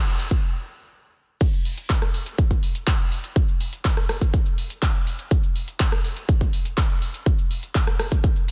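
A punchy, layered electronic kick sits up front in this emotional, dreamy house excerpt at 123 BPM in straight 4/4, joining a big-room dance drum kit of crash cymbal, handclaps, metallic hi-hats, rim click and shaker, both re-recorded in a small room with little reverb, as a brief build-up halts at 0.4 seconds before the drop lands at 1.4 seconds and runs on in a dense, heavily limited modern master.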